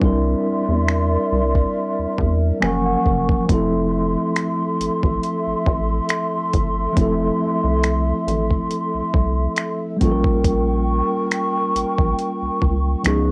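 Contemporary R&B at a slow 69 BPM in F major, tender and smooth, with a lightly swung sixteenth feel and the soft grain of a home cassette recording in a light reverb. A mellow tine electric piano carries the accompaniment over airy, hollow flute-ensemble chords with vibrato, while a rubbery, bouncy square-wave bass with a resonant filter pluck sits dark underneath and a gritty, overdriven sampler-style kit of finger snaps, hi-hat and thumpy kick stays up front. The piece opens on a break with an electric piano fill from 2.2 to 3.5 seconds, and the harmony moves from C9 through Gbmaj7 and Fmaj7 to Bbm6 at 10.0 seconds.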